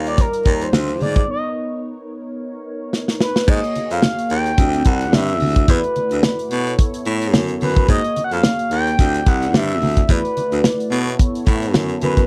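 A lightly swung sixteenth-note groove at 109 BPM drives this smooth, feel-good slice of early-eighties boogie funk, built on a punchy, up-front acoustic drum kit, bright soft-handed congas and a gritty, raspy baritone saxophone carrying the bass line. An expressive, mellow sawtooth synth lead sings the melody with chorus, vibrato and slapback echo, while dark, brassy synth brass sustains chords with chorus, phaser and a moving filter sweep. After a break from 1.3 to 3.5 seconds capped by a drum fill, the harmony moves from major-ninth chords into a cycle of suspended ninth chords, heard in a dry, close 1970s-style studio sound.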